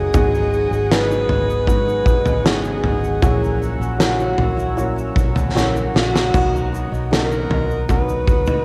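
A slow, straight 4/4 pulse at 78 BPM carries this tender, hopeful pop ballad in B major, tuned slightly below standard pitch, in a short excerpt cut from a longer piece. A loose indie drum kit sits up front with a punchy kick, fat snare, dark splash cymbal and toms in a pumping studio room, joining at 0.1 s and playing a fill from 5.6 to 6.3 s, while a grainy tube shaker sits faintly in the background. A round, foam-muted vintage electric bass holds the low end beneath an intimate baby grand piano whose action noise is audible, and a very quiet, bright steel-string acoustic guitar picks arpeggios. Over a shimmering, retro pulse-width pad with chorus floating high in the background, a close-miked alto saxophone sings the melody as a solo, with soft attack and jazz-style vibrato. The harmony moves from G#m7 through F#7/A# to Bmaj7, and studio reverb, cassette-tape colouring on most parts and a faint mains hum give the whole a homespun, lo-fi character.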